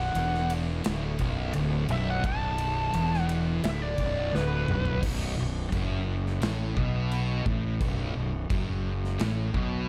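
A dark, warm production with light reverb and a small-room ambience gives this cut from a longer stoner and doom metal piece a heavy, hypnotic weight. A thick, double-tracked fuzz guitar sits up front with a distorted low riff, while a growly, overdriven fingered electric bass fills the bottom end just as prominently. Over them, a compressed fuzz lead guitar colored by wah and slapback echo plays a solo melody through the first 5.0 seconds. A big acoustic rock kit with bright cymbals, a medium-tuned snare and a punchy kick drives the groove with crash, ride and toms, and a drum fill at 4.3 seconds carries the music into a second section. There the lead guitar falls away and the harmony shifts, leaving the riff, bass and drums to grind on together.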